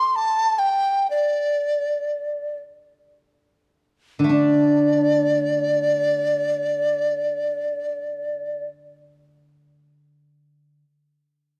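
A breathy large dizi opens this graceful, tender Chinese traditional chamber excerpt at 0.0 seconds, its bamboo tone buzzing with a membrane and carrying soft-attacked, unsteady vibrato up front as the free-time melody slows early on. At 4.2 seconds a steel-string zither enters beneath it, its fingerpicked accompaniment ringing with a silvery edge, and it carries on alone after the dizi stops at 8.6 seconds. A moderate recital hall reverb and a dark, warm production give the pair a close, intimate glow.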